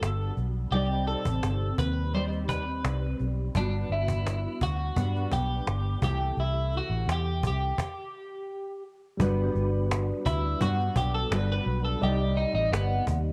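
Dreamy and hazy, this indie and bedroom pop cut from a longer piece moves at an unhurried 85 BPM in G major, drifting between Gmaj7 and Cmadd9 with a turn to C6. A clean, compressed twelve-string electric guitar carries the melody up front, shimmering with subtle chorus and slapback echo. Beneath it, a dark, full-bodied nylon-string guitar is fingerpicked with ensemble chorus and a warbly pitch drift, while a round, punchy, foam-muted electric bass sits forward and a snappy cajon with snares keeps time in a small room. The band breaks off into a stop at 7.8 s, and at 9.2 s the twelve-string steps out for a solo as a reedy, bright electric piano enters with fast tremolo and a cassette-tape tint. Light reverb and the worn, warbling character of old tape wrap the whole mix in a faded, intimate glow.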